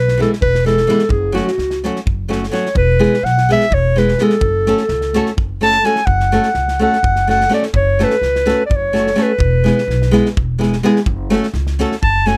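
In a straight 7/8 at 253 BPM counted in eighths, this bittersweet, virtuosic Balkan wedding-band passage in F# minor, cut from a longer piece, features an up-front, close-miked clarinet soloing in classical style throughout its 12.4 seconds, with a bright, fingerpicked flamenco guitar accompanying, woody pizzicato upright bass on steel strings, and a small-room acoustic drum kit of punchy kick and medium-tuned snare, all cycling between E and F#m in a dry, detailed recording.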